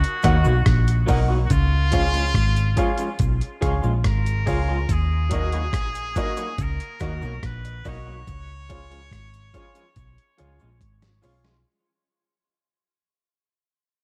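Over a laid-back, straight 71 BPM roots reggae pulse in 4/4, a gritty, compressed sampler-style drum kit with a thumpy kick and rim clicks plays alongside a round, dark hollow-body bass up front, while a slightly broken-up lo-fi guitar with lush chorus and dub echo, woody upright piano stabs, a very quiet cabasa and a nasal, distant straight-muted trumpet melody with vibrato and dub echo move between Ebm and Db in this serious, fading 11-second excerpt that closes on a drum fill from 10.0 seconds.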